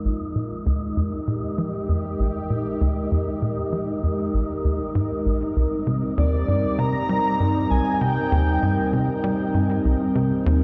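A punchy sawtooth sequencer bass riff with a filter sweep, analog chorus and tape echo drives this hypnotic, cosmic slice of ambient space music in C minor at 98 BPM, under a detuned, evolving pad holding sustained chords and an airy, wind-like tuned noise texture, as the harmony moves from Bb7sus4 to Cm7 and a breathy, flute-like synth lead with vibrato sings its melody from 6.2 to 9.2 seconds, all set in a vast, echoing cathedral reverb.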